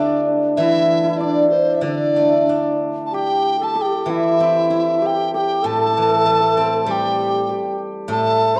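Festive yet graceful, this short cut from a longer Chinese traditional chamber piece moves at 97 BPM in 4/4 with a loose, rubato feel, set in the D shang mode. A large bamboo dizi carries the melody up front, with a buzzing membrane and a pure, straight tone with a crisp attack and rolled-off highs. Beneath it, a low end-blown xiao adds a breathy second line with vibrato and tongued notes, while a hammered dulcimer shares that second role with a shimmering, ringing sound. A steel-string zither played with fingerpicks supplies silvery accompaniment in the lower register, and all four parts sound together for the full 8.6 seconds, shifting into a new section at 3.1 seconds. A moderate recital-hall reverb and a dark, warm production lend the ensemble a rounded glow.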